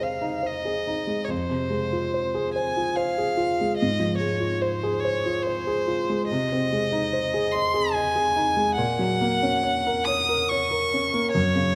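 Tender and warm, this romantic classical duo moves in an unhurried three-beat lilt with flexible rubato, heard as a short portion cut from a longer piece. A single bowed violin carries the melody up front with a rich, smooth, even tone and vibrato, while a clear, intimate, natural-sounding grand piano accompanies close by with short sustain and audible action noise. Both play throughout the 11.8 seconds, set in a moderate concert hall reverb.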